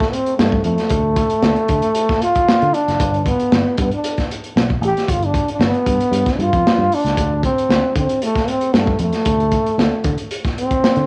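A breathy, whispered trombone with scooped notes, light vibrato and a cassette-tape and analog-delay haze opens this cool, sly funk fragment over a crunchy, gritty breakbeat kit with a punchy kick, before a fingered electric bass warmed by tube saturation joins at 0.4 seconds beneath a D5, G and D7(no3) progression, all set in a small, lightly reverberant room on a home cassette recording.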